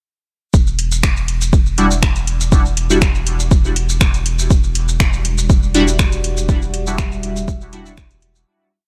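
A dry, close-sounding dub techno piece in E minor at 121 BPM, deep and hypnotic, built on an overdriven, up-front four-on-the-floor kick, a round, nasal analog bass holding the root with sidechain pumping, and a soft vintage rhythm box of metallic hats, shaker and finger snaps with a roomy, overdriven grit, joined at 1.8 seconds by juicy, resonant polysynth chord stabs with filter sweeps, chorus, phaser and dub echo, and at 5.2 seconds by a moody, warbling ambient pad with slow attack and built-in reverb as the whole piece fades out from 5.8 seconds.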